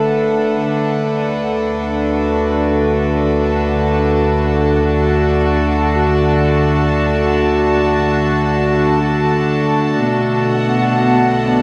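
A bright, earthy chamber string section sits up front, holding bowed, sustained chords that move from Gmaj7 to D and settle on Bm7 near 10.0 s in this serene, luminous ambient fragment cut from a longer piece. A reedy, breathing pedal harmonium holds a dry, close drone underneath, while a deep, ominous synth drone with its own built-in reverb rumbles in at 1.5 s and fades out across the passage. The whole is set in a vast, echoing cathedral-like space with a faint mains hum.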